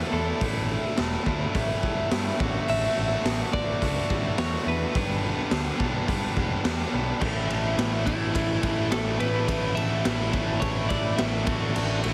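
An up-front, overdriven electric guitar riff drives this restless, anthemic quiet-loud alternative rock excerpt at 106 BPM in 4/4, moving through Asus4, Dadd9/A and G. A twangy, slightly broken-up guitar carries the melody with subtle chorus and analog delay over a growling, overdriven picked bass, while a gritty garage drum kit enters at 0.4 seconds with a punchy kick, a medium-tuned snare, a rolled-off top and a pumping stone-room sound. At 7.2 seconds a clean guitar solo arrives and a tight distorted guitar riff joins in the background, all set in light small-room reverb with a heavily compressed, radio-like sound.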